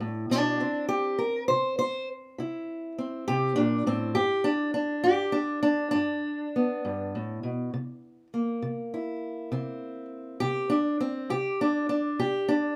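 Acoustic country blues in 12/8 at 67 BPM, this gritty, soulful passage is cut from a longer piece. A single fingerpicked steel-string acoustic guitar carries it alone from 0.0 to 12.8 seconds, ranging from G2 up to C5. The instrument has the dark, woody, boxy voice of a parlour guitar strung with old strings, and it sits up front in the sound. The harmony moves between G and C7, opening on a rootless G before the C7 arrives at 0.6 seconds. A light reverb gives the playing a little air.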